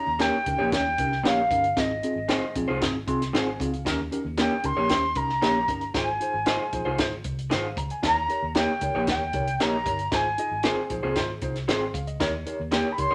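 An airy, vibrato-laden jazz flute carries the melody over a worn, slightly out-of-tune tine electric piano heard through its built-in speakers, which adds a short fill at 2.8 seconds, as a dark, foam-muted round bass, slightly broken-up lo-fi electric guitar stabs and a dry cocktail kit with a high-tuned snare and punchy kick join to drive this joyful, uplifting 1960s-style soul groove at 115 BPM in Eb mixolydian, swaying between Eb7 and Ab6 in a wet studio reverb in a passage cut from a longer piece.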